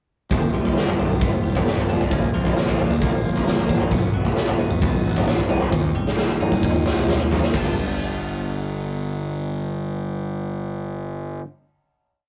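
A huge arena drum kit sits up front in this short, anthemic piece of quiet-loud alternative rock, its punchy kick, medium-tuned snare, toms and crash cymbal ringing through a big, natural-sounding room before a drum fill from 5.7 to 7.5 seconds closes out its part. In the background, a bright, clean twelve-string electric guitar picks twangy, compressed arpeggios over a G major progression moving through Bb, B and Eb before returning home. Beneath it, a fuzz-laden picked electric bass plays a syncopated riff with an overdriven yet warm tone. The tempo is a straight 133 BPM in 4/4, and the cathartic verse gives way at 7.5 seconds to a final G chord held by guitar and bass. The whole recording has a rough rehearsal-room character, with tube saturation and a moderate small room reverb.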